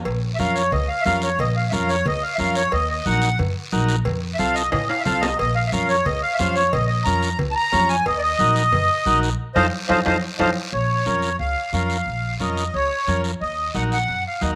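Cumbia at a driving, fiery 180 BPM in Bb harmonic minor, this excerpt cut from a longer piece puts a reedy, sweet accordion with light tremolo tuning up front for a solo running to 10.7 seconds, over a buzzy vintage combo organ with light vibrato and a woody, thumpy pizzicato upright bass moving through Bbm, Ebm and F chords. Congas with hard hands sit in the background beside a raspy, close guiro, while ringing cowbell and timbales join a band accent before dropping out at 10.5 seconds. A moderate spring reverb gives the studio ambience a gentle bloom as the tune returns to Bbm for the next section.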